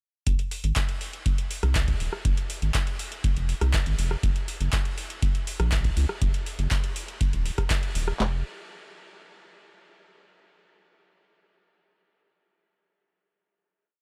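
A round, nasal analog bass sits up front in this short, driving acid house piece in F phrygian at 121 BPM, playing a dark, syncopated riff with tube saturation and sidechain pumping. Alongside it, a booming, dry drum machine lays down a four-on-the-floor kick with a tonal snare and handclaps, while a second, quieter drum machine adds metallic, tape-warm hi-hats, rim clicks and backbeat claps. The raw groove runs from 0.3 seconds to 8.2 seconds, then a final note rings out in digital ambience until 10.2 seconds.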